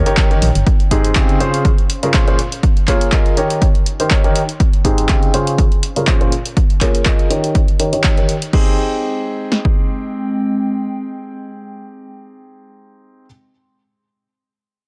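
A clear, woody upright piano riff opens this feel-good, euphoric piano house excerpt at 122 BPM in Ab major, sweeping through a low-pass filter and pumping with tape echo over a hollow, organ-like FM bass heard only until 0.6 s and a warbling, nostalgic pad with chorus in the background, while a punchy analog drum machine brings overdriven kick and snare until 9.8 s alongside tape-colored crash, handclaps and hi-hat, all on lightly swung sixteenths over an Eb7, Abmaj7, Dbmaj7, Bbm7 cycle in a dry mix.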